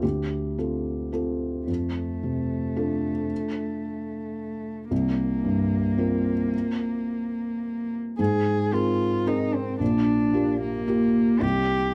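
A felt-muted upright piano opens this hopeful, intimate neoclassical fragment in F major, its dark, mellow tone and audible action noise sitting up front at 111 BPM in a rubato 3/4, tuned to A4 = 438 Hz. At 1.7 seconds a single warm cello enters as a second line, bowed sul tasto with a soft attack and light vibrato, close and intimate beside the piano. The dry, close 1970s-style studio sound with small room ambience carries both parts through a turn to an Abadd9 chord before the passage, cut from a longer piece, breaks off at 11.9 seconds.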